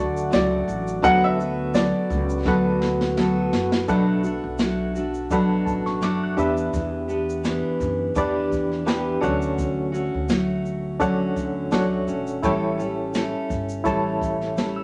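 Acoustic pop at an easy-going 84 BPM in D major, carefree and relaxed, with a light swing on the sixteenths. A clear, intimate upright piano with audible action noise carries the melody up front only for the opening 2.8 seconds, while a percussive tonewheel organ with key click and a slow rotary speaker holds sustained chords in the background until 3.9 seconds. Throughout, a dark, full-bodied fingerpicked dreadnought guitar sits up front, joined by a barky, reedy electric piano with light overdrive and fast tremolo, and a woody pizzicato upright bass. A jazz brush kit with a boomy kick, medium-tuned snare and shaker enters at 0.2 seconds and plays a fill before the second section begins at 3.9 seconds. The harmony moves from Dmaj7 and D6 through Em7 back to Dmaj7 before landing on A7, all in a wet studio reverb with a softened top end, cut from a longer piece.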